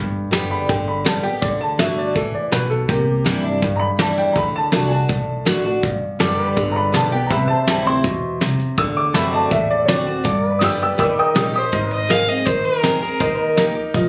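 Picked dreadnought acoustic guitar and woody pizzicato upright bass open this easygoing, down-home honky-tonk and classic country excerpt in G major at 163 BPM, with soft brushes on a punchy-kicked kit and a short-sustain upright piano taking a solo until 11.7 seconds, clean fingerpicked pedal steel adding sustained slide chords with volume swells from 6.2 seconds, and a nasal, reedy bowed fiddle carrying the melody from 11.6 seconds as the harmony shifts to Abadd9 and Eb, all caught on a phone in the room with light club reverb.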